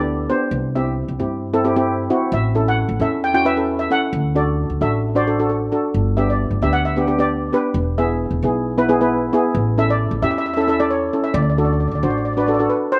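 A lead steel pan carries an airy, shimmering melody over mellow, dark chords from a double seconds pan played with soft rubber sticks and a woody pizzicato upright bass, all three up front in this sunny, festive calypso, recorded dry in the open air and cut from a longer piece.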